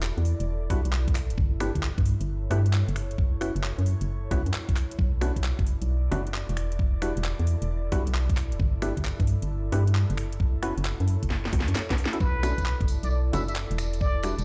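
A skippy two-step groove at 133 BPM, swung on the 16ths, sets a soulful B minor mood in this UK garage piece: an up-front, hollow organ-like FM bass with tube saturation and sidechain pumping sits beneath a knocking, tape-toned electronic kick and a garage kit of cracking snare, metallic hats, bongos, finger snaps and handclaps, while an airy, detuned pad pumps softly under mellow, chorused organ stabs run through cassette tape and delay, and after a drum fill at 11.3 seconds a plunger-muted jazz trumpet with wah-wah, light vibrato and scooped notes enters at 12.2 seconds alongside a distant, jingly tambourine, the whole mix heard in a large, reverberant room.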